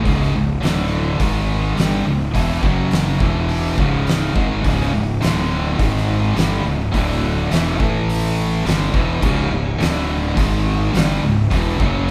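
A hypnotic, heavy stoner and doom metal riff at 105 BPM in 4/4 opens with a bright, double-tracked high-gain guitar and two thick fuzz guitars set in the background, sitting over a growly, overdriven fingered electric bass. At 0.1 seconds an oversized low-tuned drum kit joins up front, gritty and saturated, its boomy kick, fat snare, hi-hat and dark crash cymbals filling a bright, pumping stone room. The band plays live together in one room with light reverb, circling around C#5, D5, G#5 and C#m through this cut from a longer piece.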